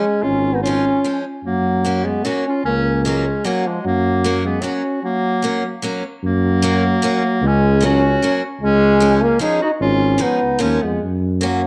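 Bathed in a moderate spring reverb, this bouncy, jolly alpine folk dance in three features an up-front euphonium singing the melody with vibrato, a punchy, bright clarinet on a second line, a picked steel-string acoustic guitar with fresh strings and audible finger squeak supplying accompaniment, and a mellow, smooth-topped tuba on bass from 0.2 s, with a brief break at 5.0 s before the phrase returns.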